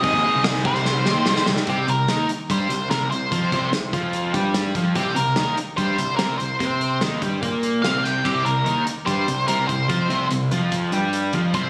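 A dark, fuzz-soaked lead guitar with tape echo carries the melody over a double-tracked overdriven rhythm guitar riff, a bright, punchy fuzz bass and a loose, small-room drum kit with murky cymbals in this moody, restless indie rock excerpt, where the harmony moves from an Ab chord into C minor before a drum fill from 0.9 to 1.7 seconds kicks the band into the next section.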